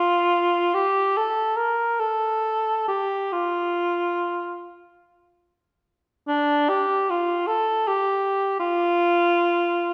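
A dark cor anglais carries this brief classical passage alone, its tone colored by a light vibrato and a smooth top between D4 and Bb4. The mood is nostalgic and serene, and the line moves freely and expressively in a slow, rubato 6/8, with the dotted-quarter pulse drifting between 32 and 55 BPM. The solo instrument sits up front, yet the generous reverb of a recital hall, with a 1.6-second decay, suggests a listener seated further back in the room. The music shifts into a new section at 6.3 seconds and runs to 9.9 seconds, a short cut from a longer piece.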